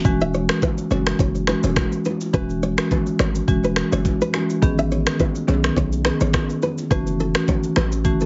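A heavily compressed, radio-like sound with light reverb and a top end that stops at 7.7 kHz frames this breezy, joyful afrobeats excerpt in E major at 105 BPM, swung on the sixteenths. An electronic, up-front drum kit with a knocking kick, finger snaps, rim click and shaker sits over a punchy, heavy 808-style sine bass with a fast attack and decaying tail, while a warm marimba played with medium mallets carries the chords E69, Amaj9#11 and F#m7. A bright, fingerpicked nylon-string guitar riff with audible finger squeak and tape echo rides on top, and distant congas and bongos murmur in the background of a large room.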